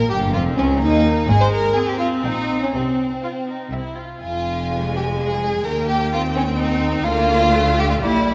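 Up front, a warm, smooth second violin line drives this stormy, urgent excerpt from a quick classical-period movement for string orchestra in 3/4, played with rubato, while the first violins carry the clear melody in the background. A close, focused viola section supplies the accompaniment, and a rich, distant cello section shares the bass line with double basses playing expressive portamento, every part bowed with vibrato. A wet scoring-stage reverb and a rolled-off top shape the sound as the harmony moves from Eb through Fm and lands on Bb/D.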